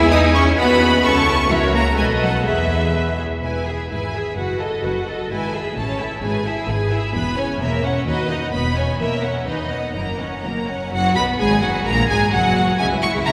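In a straight 2/4 at a quick 129 BPM, this cheerful, spirited classical-period movement for string orchestra is cut from a longer piece. It opens in E major and moves to B major at 7.1 seconds. A rich, lush violin section carries the melody with focused vibrato, and a second violin section joins at 0.1 seconds with its own line. Beneath them, a clear, distant viola section supplies the accompaniment. A smooth, even cello section and a double bass section, which sits up front with light vibrato, share the bass. The opening idea returns at 10.9 seconds, and the whole ensemble is bathed in a wet church reverb that gives the bowed sections a spacious, resonant glow.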